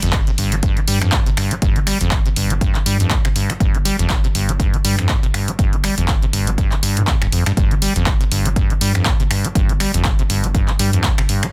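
Hypnotic and driving, this acid house cut swings its sixteenths over a steady 4/4 pulse on a single G minor chord, drawn from a longer piece. A squelchy, resonant sawtooth acid bass carries the riff up front, its bright, filter-swept tone thickened by chorus, while a deep, saturated sine sub bass sustains in the background with sidechain pumping. An analog drum machine plays finger snaps, handclaps and hi-hat from the outset, and a dry, punchy electronic kick joins it at 0.1 seconds, all set in light reverb within a dense, heavily limited modern master.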